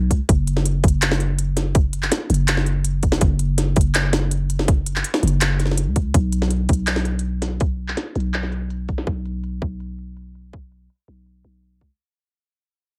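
A growling 808-style bass opens this dark, spacious half-time drum and bass excerpt at 164 BPM, sounding buzzy and sine-based with a fast attack that decays, sitting low and up front. At 0.1 s the drums arrive: a tight, layered electronic kick pushed forward with overdrive, and an electronic kit of handclaps, hi-hat and a woody snare. The kit is also overdriven and up front, with crisp hats and a large-room sound that is low-pass filtered, as are the hats and snare. The opening stretch is a drop, and from 6.1 s the music moves into a second section that fades out toward 12.0 s. The overall mix is dry, carrying little reverb, and the tuning sits at A4 = 441 Hz.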